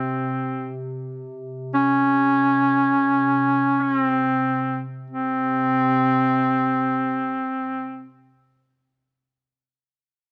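A clear duduk and a warbling, tape-like pad begin together, setting a longing, solemn Caucasian lament in free time, tuned to A4 = 439 Hz and cut from a longer piece. The duduk sits up front as the solo voice, holding a narrow line from C4 to Db4 with light vibrato and scooped notes in a folk style, its tone roomy and slightly distant. Beneath it, the pad holds a dark drone on C3 at a much lower level. The pad is a nostalgic, lo-fi, vintage blend of detuned, wave-folded square and triangle tones, with slow attack, long release, chorus and its own built-in reverb. The opening passage slows down through its first 5.1 seconds before a new section begins and carries on until the duduk and pad stop at 8.1 seconds. Close, detailed microphones and light reverb keep the recording intimate.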